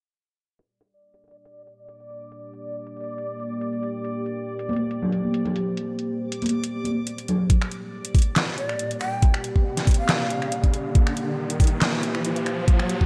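A dubstep kit of finger snaps, handclaps, metallic hats and a deep snare opens this meditative, dark deep dubstep passage in G minor at 139 BPM with a half-time, lightly swung feel under a filter sweep, soon joined by a dreamy reversed granular swell, a moody detuned sawtooth pad with chorus and a sub octave, and ringing high-tuned congas with dub echo, before a knocking up-front electronic kick arrives at 7.5 seconds to start the build-up and a breathy, bamboo-toned shakuhachi with vibrato and dub echo sings briefly over an electronic riser from 8.6 seconds.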